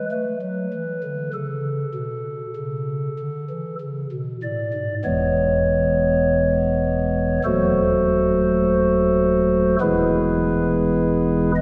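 A classical chorale-style excerpt for solo pipe organ on a stopped flute stop, serene and majestic, moving at a slow, rubato pace in four. The soft, hollow flute tone with its baroque voicing and a touch of chiff sits up front, reaching from deep bass to a clear upper register, and is bathed in a wet church reverb with a long decay. After opening on an A chord, the harmony turns toward E at 5.0 seconds, passing through a diminished seventh before settling back on E.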